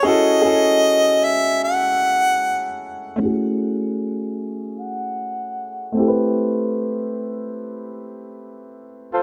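R&B at 76 BPM in a straight 4/4, with a sensual, late-night mood, this short piece is cut from a longer recording. A warm, close-miked harmonica carries the melody up front in a jazz style, with light vibrato, tongue slaps and scooped notes, treated with a low-pass filter and digital delay. A clear concert grand piano with deep bass sits up front as accompaniment, its natural tone softened by a low-pass filter. Both parts play throughout the 9.2 seconds, over harmony that moves from F#m7 to Am7 at 6.0 seconds. A filter sweep runs from 3.2 seconds as the music shifts into a new section. A moderate concert hall reverb gives the sound a spacious tail.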